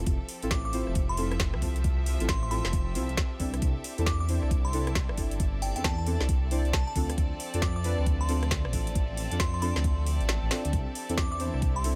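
This sunny, bouncy two-step garage cut opens straight away on a deep, mellow chord stab with a full-bodied, chorused tone and a filter sweep, over a dark, rumbling detuned saw bass that sits up front. Behind them, a biting symphonic violin section holds lush, vibrato-laden chords in the background, pumping with the sidechain, while a soft, floating studio string section bowed sul tasto adds a pure texture that pumps as well. At 0.5 seconds a glassy, crystalline FM bell takes the melody up high, its long release trailing through chorus and tape echo. The swung groove comes from an overdriven, knocking electronic kick and a layered garage kit of woody snare, rim click and metallic hats. The kick drops out at 10.3 seconds for a drum fill at 10.5, as the harmony moves through Fmaj7, C69 and Dm7 before returning to C69. The mix is dry and close, with little reverb.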